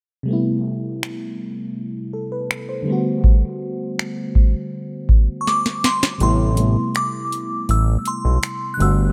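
Late-night and longing, this short contemporary R&B excerpt opens on a soft, round FM electric piano with chorus and analog delay over Am9 and Gmaj9 chords, joined at 1.0 s by a booming analog drum machine with deep kick, crisp snare, metallic hats and finger snaps. A glassy, crystalline synth bell melody then arrives at 5.4 s just before a drum fill, and a fat, detuned analog bass enters at 6.2 s as the kick drops out, all in a dry, echo-heavy mix.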